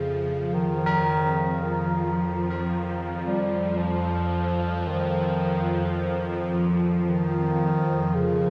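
Drenched in a cavernous cathedral reverb with a dark production, this 8.5-second fragment of a longer piece is a slow, unsettling dark ambient drone at 55 BPM, resting on an Ebadd9/F chord. Up front, a tense, string-like sawtooth drone with a detuned noise layer, vibrato and a phaser sustains bright and slow-blooming from F2 to F3. A soft-attacked bass clarinet carries a classical-style solo melody between Db3 and G3 through a delay, while solemn, metallic tubular bells struck with a rawhide hammer ring out boxy delayed arpeggios from G4 to Bb4.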